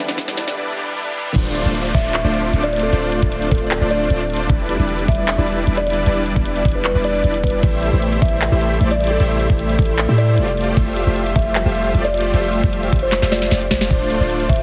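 Huge, detuned supersaw chords pump up front through a dreamy, bittersweet future bass excerpt at 153 BPM in a half-time feel, where a bell-like electric piano with tape echo and background risers, a reverse cymbal and a downlifter build toward the drop at 1.4 s, when a deep, boomy 808-style bass arrives, a woody, ringing kalimba carries the melody from 1.9 s, and an ethereal, airy pad murmurs beneath a knocking electronic kick and a trap kit of sharp snare, bright hats, handclaps and crash, all squeezed into a dry, heavily compressed radio-like sound.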